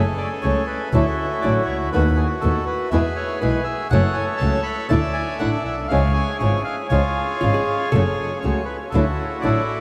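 Tango excerpt, sultry and dramatic with a rubato feel, where an up-front, reedy bandoneon carries the melody through tape echo over fingerpicked acoustic flamenco guitar with audible finger squeak and a close, intimate bowed double bass played sul tasto with light vibrato and an airy, soft-attack tone, while a dark, clean hollow-body electric archtop guitar adds a brief picked second line in the background from 7.4 to 8.3 seconds, all bathed in a huge, dreamy ambient reverb.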